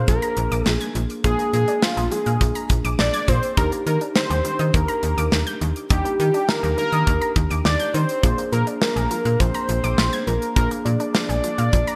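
A fat, detuned analog lead carries the melody up front, its sawtooth tone thickened by a sub octave, mellow and sustained with vibrato and trailed by delay. This bright, upbeat synth-pop fragment, cut from a longer piece, moves in a straight 4/4 over a Bb7 to Ebmaj7 and back to Bb7 progression. A snappy, metallic FM bass with a slap-like attack sits just as close, alongside a polished modern drum kit of hi-hat, punchy kick and medium-tuned snare that enters at 0.1 seconds, its airy small-room sound shaped by gated reverb. Muted, felt-like synth keys add soft, dark, intimate chords through a chorus. An analog pluck in the background spins round, nasal, wave-folded arpeggios across a broad span, with both chorus and delay. A moderate plate reverb and a bright 1980s-style digital production tie the parts together, and the bass stops at 11.8 seconds.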